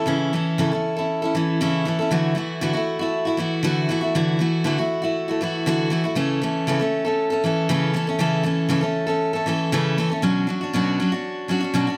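A rock excerpt with a nostalgic, open-road mood, carried entirely by a picked steel-string acoustic guitar playing alone from start to finish. The guitar has the bright, full-bodied voice of a dreadnought with fresh strings, sitting up front in the mix, and a touch of finger squeak gives it an intimate, human edge. Its part moves through chords such as A/C# and Dadd9, and the harmony shifts at 10.2 seconds to a Bmadd9 as a new section begins. A light reverb lends the sound a gentle sense of space, and the straight, steady feel keeps the brief passage moving forward like a stretch of highway.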